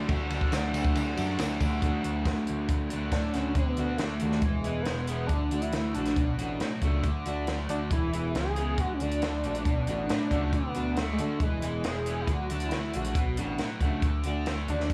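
A light studio reverb wraps this carefree, jangly indie rock clip at 138 BPM in D lydian, where a bright, twangy guitar through a small old amp and a compressed, overdriven guitar with slapback echo share a lush-chorused riff over a growling, overdriven picked bass and a tight, punchy cocktail drum kit with dark cymbals and a high-tuned snare, a jingly tambourine sounds only until 1.7 seconds, and from 3.1 seconds a thick, detuned, wave-folded unison lead with vibrato carries the melody as the chords move between D, E and Bm7.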